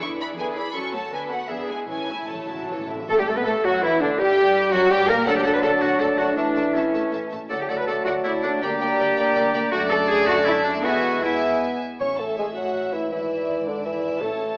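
Spirited and cheerful, this quick classical-period orchestral movement in 3/4 sways with rubato as sul tasto strings, with a warm violin melody, a clear floating second violin line, soft violas, a smooth cello bass and a dark double bass, are joined from 3.1 s by a bright, present oboe, a very quiet flute group, a distant clarinet, a close mellow bassoon and mellow sustained French horn chords, while hard-mallet timpani sit in the background and the whole passage, cut from a longer piece, carries a wet scoring-stage reverb and an AM-radio tint.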